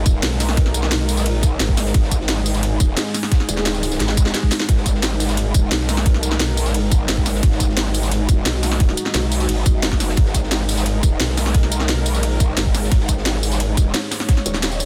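Dark technical drum and bass at 175 BPM in G# minor, this aggressive excerpt rides a growling, detuned growl bass with tube saturation and chorus, bright and up front, over a deep, moody analog pad holding a G#madd9 chord with slow attack, sidechain pumping and chorus. A tight, tape-kissed electronic kick and a layered drum and bass kit with a cracking snare, crisp hats, ride cymbal and tambourine drive the beat, while a gritty, very quiet acoustic breakbeat kit with a rolled-off top sits underneath. A drum fill at 4.0 seconds meets a faint electronic swell at 4.2 seconds, all in a dry, dense and heavily limited modern master.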